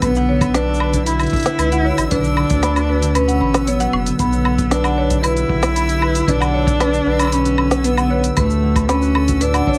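A dark, bowed cello with vibrato carries the melody up front through this brief, autumnal and delicate folktronica cut in B minor at 115 BPM, joined by a buzzing hard-mallet marimba line washed in plate reverb and delay, ringing fingerpicked concert harp arpeggios, a round analog bass, a muffled lo-fi kick in the background, an organic electronic kit with a woody snare, crisp hats, shaker and woodblock, and a faint reversed, granular swelling texture, all over Bm, G/B and D chords with a small-room ambience and vinyl crackle.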